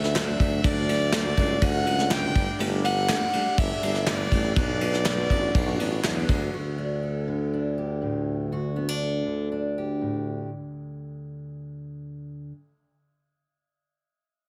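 Anthemic and hopeful, this indie folk piece opens with a woody, bowed fiddle melody touched by light vibrato and analog delay over a boxy, picked ladder-braced acoustic guitar, a very quiet, dark brass section holding soft-attack chords, an up-front warm tuba bass, a soft brush drum kit with a punchy kick, and crisp, distant group handclaps, until at 6.5 seconds a full-bodied fingerpicked steel-string dreadnought takes up the accompaniment while the tuba carries on to 10.5 seconds, the mix set in small-room ambience with a heavily compressed, radio-like sound.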